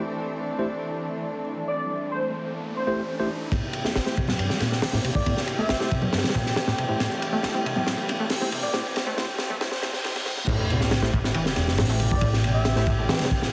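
A crunchy, punchy breakbeat kit with a high-tuned snare and dark cymbals sits up front from 3.5 seconds, driving this funky, swaggering A minor breakbeat cut at 138 BPM alongside a rubbery, resonant acid bass riff whose filter sweeps through the build-up while bright, saturated congas and bongos sit in the background. Underneath, a dark, bowed string section pumps with sidechain, a clean tine electric piano stabs through delay, an airy, detuned lead with a lo-fi radio tone floats a melody, and an electronic riser, reverse cymbal and sub drop push toward the drop. At 10.5 seconds a woody, tube-saturated pizzicato upright bass arrives for the drop, all under plate reverb, vinyl crackle and a dense, heavily limited master.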